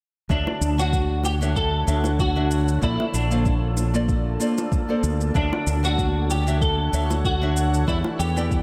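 A lightly swung 4/4 groove in a relaxed, sunny sunset-chillout mood rests on a soft, tape-warm electronic kick with room ambience, a layered electronic shaker and low-tuned, round bongos set back in the background with slapback echo, while a dark, punchy fretless bass sits up front. A fingerpicked nylon-string guitar with audible finger squeak accompanies a clean, picked semi-hollow electric guitar melody coloured by chorus, delay and slapback echo, and from 1.2 seconds an ethereal, granular pad adds sustained chords with an octave-up shimmer. The harmony drifts from Dmaj7 to Bbmaj9 and back before touching Em7, all bathed in a concert-hall reverb that gives this fragment of a longer piece a big arena sound.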